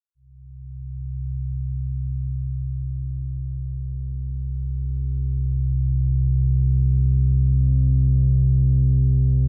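Ambient and desolate, this free-time excerpt centres on a lone deep rumbling drone that sounds from 0.6 to 9.5 seconds, its dark triangle-and-sawtooth tone sitting up front with a slow attack, long sustain and long release, coloured by phaser and its own built-in reverb inside a moderate plate reverb, for an ominous, brooding stillness.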